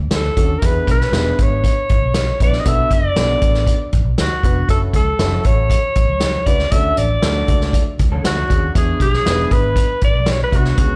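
Heard as a live club gig through the venue's PA, with small-room ambience and club reverb, this passionate, driving cut from a longer 1960s-style soul piece features a forceful, vibrato-rich alto saxophone up front, playing a jazz-style solo with scooped notes. Below it, a round, foam-muted fingered electric bass and a roomy vintage drum kit, with a tight kick and a medium-tuned snare, drive the groove, while a dark, mellow grand piano fills in the Dmaj7, E7, Bm7 and F#m7 changes. Very quiet, bright congas join at 4.7 seconds, and a slightly broken-up, lo-fi electric guitar riff with analog chorus and slapback echo surfaces in the background at 8.1 seconds.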